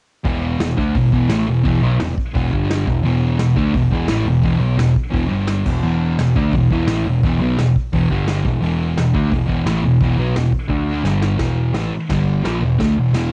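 A straight 4/4 pulse at 172 BPM drives this raw, rowdy garage rock passage, where an up-front, double-tracked fuzz guitar grinds out a riff over E5, G5 and D5 chords, a growling, bright overdriven picked bass holds down the low end, and a vintage kit played with brushes adds dark cymbals, a tight kick and a fill at 11.1 s that tips the music into a new section at 11.4 s, all captured as a lo-fi home cassette recording in a small room that dulls the top end.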